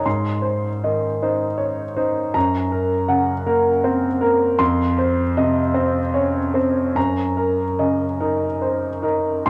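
A solo grand piano opens this brief passage of reflective, intimate neoclassical minimalism, drifting in a rubato 6/8 at roughly 47-54 BPM in E-flat Dorian, tuned to A4 = 439 Hz. The boxy, up-front piano carries audible action noise, with cassette tape coloring and tape echo, and it ranges from F2 to C6 across chords of Ab, Gb, F5 and Ebm7/Gb. A moderate spring reverb and a small room give the home cassette recording a close, private air through to 9.5 seconds.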